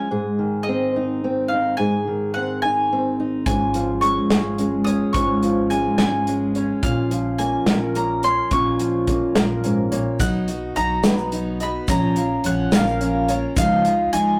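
A steady 6/8 pulse at 71 BPM carries this nostalgic, warm indie folk piece in Db major, cut from a longer work, where a woody, double-strung mandolin sings the melody high over a dark, old-stringed fingerpicked acoustic guitar placed up front. At 3.5 s the arrangement builds as a slightly detuned vintage upright piano adds smooth, long-sustaining arpeggios, a pizzicato upright bass sits low, and a natural country drum kit enters up front with a punchy kick, hi-hat and a medium-tuned snare in a small room. At 10.2 s a bright, full-bodied jumbo guitar takes over the accompaniment while a grainy tube shaker murmurs in the background, all inside a rough rehearsal-room sound with tube saturation and a short, wet studio reverb.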